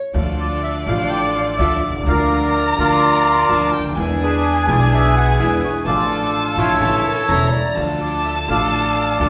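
Tango in D harmonic minor at 126 BPM, this sultry, melancholic passage from a longer piece moves with a rubato feel. A reedy, dark bandoneon carries the melody up front, entering at 0.4 s with an airy edge, while a solo violin plays a second line with vibrato, portamento and a soft, expressive bowed attack. Beneath them, a smooth, vintage grand piano supplies accompaniment and a pizzicato upright bass gives a woody, growly, thumpy low end, as a lush, intense bowed string section sits in the background with clear stabs. A pure, hollow silver flute adds a brief, distant second line around 7.1 s, mellow in tone with a crisp attack. The chords move from Dm through Bb/D and E7 to Dm/A and A before resolving on Dm, all set in the wet reverb of a recital hall.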